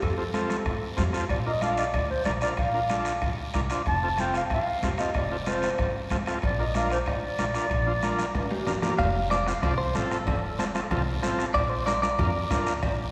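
A danceable, festive cumbia fragment, cut from a longer piece, moves at a brisk straight four over a simple alternation between two chords. A dark, breathy clarinet with vibrato and a soft attack carries the opening solo in a whispered, intimate jazz style until about 8.6 seconds. A drum fill then hands the lead to a bright, twangy clean electric guitar, picked and compressed and bathed in spring reverb, which solos from 9.0 seconds. Beneath them a woody upright bass plucks the low end, while a buzzy, overdriven combo organ with light vibrato fills in the chords. A soft-beater bombo and ringing metal-shell timbales and cowbell sound distant, with thick-skinned, high-tuned congas tucked in the background and a raspy, band-limited guiro scratching along. The whole band sits in a church or concert hall, wrapped in a long, wet reverb.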